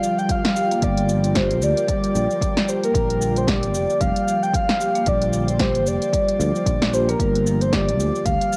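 A lo-fi home cassette recording with light reverb opens this earthy organic downtempo fragment, cut from a longer piece, moving at 113 BPM with a swung sixteenth feel in G minor pentatonic over Gm7 and Bb69 chords. Up front, a breathy, flute-like synth lead carries the melody with vibrato, subtle chorus, tape color and analog delay, while a bright, ethereal pad sits in the background with phaser, ensemble chorus, 12-bit sampler grit and sidechain pumping, and a woody, mellow marimba played with soft mallets spins arpeggios through tape and delay. A deep house kit with a punchy snare, smooth hi-hats and shaker runs throughout, joined at 0.3 seconds by a punchy electronic kick and at 0.8 seconds by a growly, sustaining fretless electric bass shaped by sidechain pumping.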